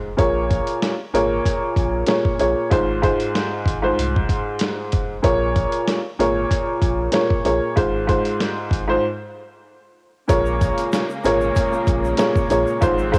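A swung 95 BPM boom-bap groove in Bb minor rides on a gritty, overdriven sampler-style drum kit with a thumpy kick, set up front beside a worn, woody, slightly detuned upright piano with cassette-tape colour cycling through Bbm7 and Fm/Ab over a deep, thick sub bass, and after a break at 9.0 seconds a lush bowed string section and a grainy tube shaker enter in the background at 10.3 seconds, giving this moody, tough hip-hop excerpt a dusty small-room feel.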